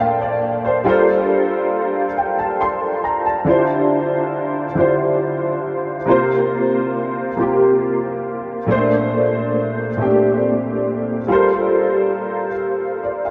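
Soaked in a huge, dreamy reverb, this late-night, sultry R&B fragment in D minor drifts at 46 BPM in a straight 6/8, carried entirely by a solo concert grand piano that sounds intimate and up front, with audible action noise, deep bass, long sustain and a shimmer of ensemble chorus and diffuse ambient delay, moving from Bbmaj9 and Gm11 into a second passage at 3.5 seconds that turns through Dm11 and C7sus4 before returning to Bbmaj9 and Gm11.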